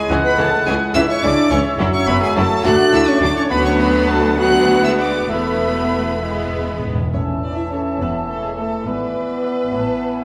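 Cheerful and lively, this classical-period movement for symphony orchestra moves in a lilting 6/8 with a flexible, rubato feel, cut from a longer piece. A chamber violin section carries the high melody with an intense, vibrato-laden bowed tone. A closer studio violin section and a bright flute section weave supporting lines in the background, joined by a warm, distant solo oboe and a very quiet solo clarinet. Beneath them a clear solo bassoon and a lush, distant viola section supply accompaniment, a dark French horn section holds sustained chords as the most prominent voice, and smooth, even cello and double bass sections anchor the bass. Timpani struck with medium mallets enter at 6.2 s with a dry fill that leads into the second section at 7.1 s. A roomy scoring-stage reverb surrounds the ensemble with a generous, lingering tail.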